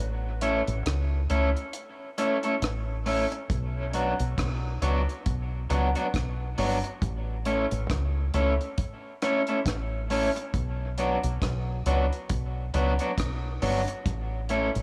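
Spacious and meditative, this dub reggae passage from a longer piece moves at 68 BPM in B minor with swung sixteenths. A round, punchy, foam-muted fingered electric bass sits up front from 0.0 s, and a twangy, slightly broken-up picked electric guitar, colored by spring reverb and tape echo, joins at 0.4 s alongside a dry, dark drum kit of tight kick, hi-hat and rim click with a rolled-off top. All of it rides an unhurried A to B minor chord sway, with an opening break running until 3.5 s.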